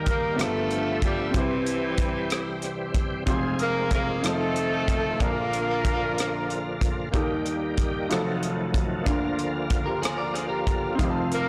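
A blown-out, overdriven recording with light small-room reverb carries this hopeful, jubilant slow gospel excerpt in 6/8 at 62 BPM, where a mellow horn section and a breathy tenor saxophone with scooped notes share the melody until 6.8 seconds, a clear baby grand piano accompanies, a bright tonewheel organ holds shouting chords through a slow rotary speaker with key click, crisp fusion drums keep hi-hat, tight kick and rim click up front, and a twangy clean electric guitar adds a brief second line at 9.9 seconds.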